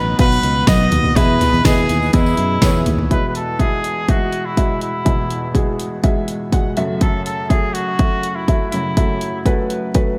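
A clear trumpet melody opens this hopeful, piano-driven pop excerpt in E major at 123 BPM, backed from the start by a soft, felt-muted upright piano with a slapback echo, a woody, full-bodied steel-string acoustic guitar riff set in the background, and a growly, punchy fingered electric bass. A punchy, layered pop drum kit with a fat snare, warm hats and toms sits up front almost immediately, alongside a jingly tambourine tucked quietly behind. The chords move from B to E, and at 3.1 seconds the guitar, bass and tambourine fall away as the music shifts to Eadd9 and then F#m7. That leaves the trumpet, with its light vibrato and roomy, distant tone, singing over the mellow, intimate piano and the electronic-sounding drums. A lush hall reverb gives the whole mix a big arena feel, and the trumpet line ends at 9.4 seconds while the piano carries on briefly before the clip is cut off.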